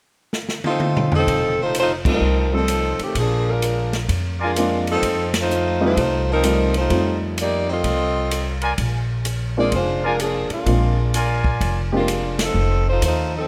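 A drum fill at 0.3 s opens this energetic big band swing excerpt at 128 BPM in F mixolydian, where a warm saxophone section with vibrato carries the melody up front over a woody pizzicato upright bass and an airy, polished kit with dark cymbals and a punchy kick, while an intimate baby grand piano with audible action noise accompanies the F7 and Bb7 changes and a clear, tight trumpet section adds a brief stab at 4.4 s and returns with stabs from 8.6 s, with band accents punctuating the swing under light reverb.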